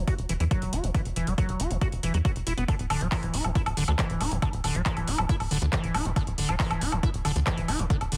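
Psychedelic trance with an intense, hypnotic drive, this short cut from a longer piece sets a squelchy, resonant liquid acid bass riff with chorus, sidechain pumping and tape echo over a tight, nasal sequencer bass, a punchy up-front electronic kick and a techno kit of handclaps, metallic hi-hats and woodblock, all kept dry as the harmony moves from E5 to Dsus2 at 2.7 seconds.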